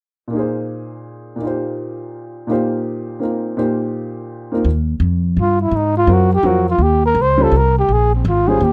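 Relaxed and playful, this brief swinging jazz waltz at 167 BPM in Eb mixolydian opens with a boxy, warm upright piano comping alone from 0.3 s with audible action noise. A woody pizzicato upright bass joins at 4.6 s, and at 5.4 s a dark, whispered trumpet takes an intimate solo with soft attacks and vibrato, all captured in a dry, close 1970s-style studio sound.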